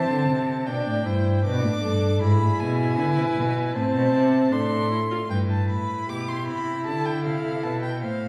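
A close, expressive first violin sings the melody with soft attacks, vibrato and portamento over a dark, woody second violin, a focused viola and an up-front cello with a smooth top in this driving yet contemplative baroque-style string-quartet fugue at 78 BPM in 4/4, moving from A minor through E7/G# to a D minor arrival around 6.9 seconds, all set back in a reverberant recital hall in a brief cut from a longer piece.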